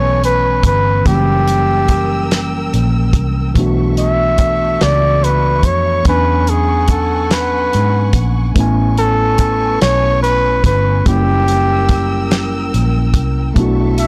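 A close-miked flugelhorn opens this intimate, tender slow R&B excerpt in 6/8 at 48 BPM in A major, its scooped, jazz-style solo line sitting up front with a digital delay trailing behind it. From the start it is joined by a mellow, clean tine electric piano playing the accompaniment, a dark, lush studio string section holding bowed chords with vibrato and a smooth top, and a round, foam-muted vintage electric bass whose amped tone carries transformer saturation. A dry 70s drum kit enters at 0.2 seconds with hi-hat, a fat snare and a tight kick with soft clipping, placed up front alongside the bass and horn. The harmony moves through Amaj9, F#7b9, Bm11 and E13 before cycling back. The small room ambience and a blown-out, overdriven recording give the whole a gritty, saturated character beneath its gentle mood.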